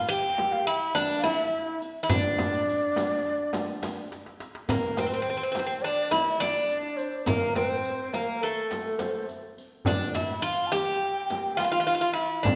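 A bright, metallic Greek bouzouki carries the picked melody up front over its double strings in this longing, soulful excerpt of a Turkish makam ensemble piece in D makam ussak, moving in 9/8 at 209 BPM in eighths, while a breathy low ney adds a reedy, vibrato-laden second line, a crisp metal-shell darbuka and a riq with bright jingles sit in the background beside a soft-handed frame drum, and a drum fill at 4.1 seconds leads into a new section at 4.7 seconds, all set in the wet reverb of a recital hall.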